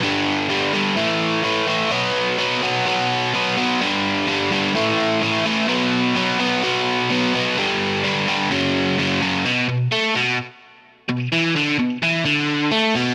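This rock excerpt in B minor moves at 127 BPM in a straight 4/4 with a brooding, gritty mood. A lone electric guitar, biting, bright and double-tracked, sits up front, picked with overdrive and a slapback echo. It cycles through G5, A5 and B5 power chords before turning to F#5 and settling on B minor at 9.4 seconds, all in a dry, close-sounding room.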